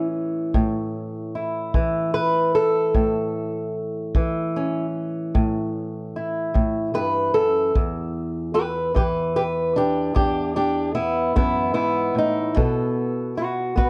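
A fingerpicked old ladder-braced acoustic guitar leads this short excerpt of acoustic country blues, its woody, boxy tone and old strings sitting up front with a touch of plate reverb as it carries the melody across a range of E2 to B4. The mood is swaggering and soulful, moving at a slow 50 BPM in 12/8 with a straight feel and tuned slightly above standard pitch at A4 = 441 Hz. A kick drum joins at 0.5 seconds, punchy yet smooth, with a small-room character, brushes and a rolled-off top. The harmony rests on A before shifting to E7 at 7.7 seconds and B7 at 12.6 seconds, all within a single section. The production is dark and warm, set in a moderate studio reverb that wraps around the duo.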